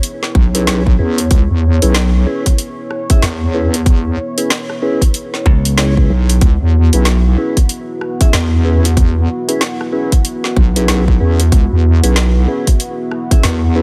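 Set at 94 BPM in 4/4 with a swung 16th-note feel, this glitch hop clip grooves in a playful, funky way over a single C#m7 chord in C# minor pentatonic. A tight, up-front electronic kick sits beneath an overdriven drum kit of woody snare, rim click and bright hi-hats. A heavy, square-and-sine wobble bass carries the low end, saturated through tube warmth and thickened with chorus, while a punchy, bright slap bass pops in briefly from 5.5 to 6.1 seconds. Above them, a soft, flute-like tonewheel organ plays stabs through a slow rotary speaker with delay and sidechain pumping. A deep, moody analog pad of detuned sawtooth and sub octave holds sustained chords in the background, its chorus and pumping adding motion, all set in a digital ambience.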